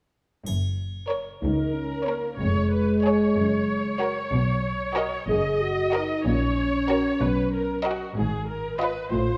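This is a brief cut from a playful, whimsical cinematic film cue in a straight 6/8, with a quirky, mischievous mood. Bowed double basses open at 0.4 s, and a background of lush cellos enters at 0.5 s alongside a bright triangle that sounds only until 1.7 s. A distant violin section carries the high melody over a smooth-topped second violin line and expressive violas, while a dark, tight French horn section sits up front with sustained chords, all set in the bloom of a reverberant scoring stage.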